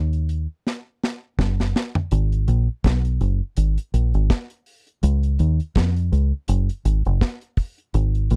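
A dark, round, foam-muted fingered electric bass opens this laid-back, serious roots reggae excerpt in G# dorian at 82 BPM, sitting up front in a deep dub register with a swung sixteenth-note feel in 4/4. An acoustic drum kit with a tight kick, medium-tuned snare, hi-hat and toms joins at 0.1 seconds and plays a fill from 0.7 to 2.1 seconds before the groove settles into its next section. The close 1970s-style studio sound is dry, with little reverb, keeping both parts direct and present.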